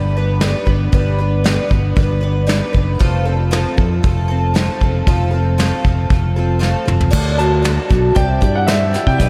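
A bright, shimmering twelve-string acoustic guitar, picked with audible finger squeak and treated with analog chorus, carries this hopeful, open-road stretch of folk and heartland rock at 116 BPM in G major, over a punchy, up-front fingered electric bass. A soft brush drum kit with a tight kick comes in at 0.4 seconds and plays a fill just before the move to D at 7.1 seconds. At 7.4 seconds a boxy, intimate grand piano with audible action noise adds a high melody through diffuse ambient delay, all within a dreamy mix soaked in moderate cathedral reverb.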